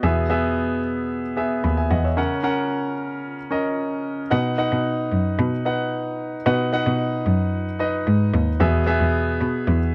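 A clear concert grand piano and a single bowed cello open together in this anthemic, uplifting fragment of piano-driven pop. The piano carries the accompaniment with deep bass, long sustain and audible action noise, while the cello holds the low end with biting, intense vibrato and an airy bow. A break arrives at 2.2 seconds and a new section begins at 4.3 seconds, with both parts sitting up front in a dry, close 1970s-style studio sound that leaves the piano polished and intimate.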